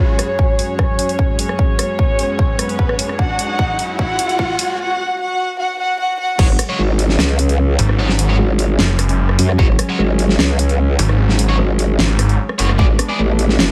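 Heavy wobble dubstep in a half-time feel, aggressive and heavy, cut from a longer piece: a build-up pairs a dark, woody violin section carrying the melody through a filter sweep and dub echo with sustained chords from a reedy, gut-string chamber ensemble, a floating sul tasto symphonic string texture in the distance, an electronic riser and a drum fill from the big-room kit with its huge snare. At 6.4 seconds the drop hits as the violins stop and a growling, wobbling bass with chorus and saturation takes over, joined by bright, double-tracked overdriven guitar stabs with echo. At 7.8 seconds a snarling, detuned saw bass with a moving notch and distortion arrives, while the punchy kick returns only in brief hits.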